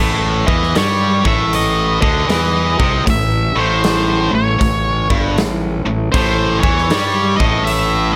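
A double-tracked rhythm guitar, bright and biting, opens on a low riff at the very start, joined at once by a growly fingered electric bass with overdriven fuzz, both sitting up front in this gritty, driving stretch of blues rock power-trio playing with a southern rock lean. At 0.5 seconds a dark, octave-fuzz lead guitar enters with a picked melody high above, washed in plate reverb and placed just as close. A big acoustic rock kit arrives at the same moment, its punchy kick, medium-tuned snare and hi-hat ringing in a large room. The swung eighth-note feel gives the heavy groove a loping swagger, and the whole passage rests on a single A chord. A light reverb lends the mix some space before this short section, cut from a longer piece, closes at 8.2 seconds.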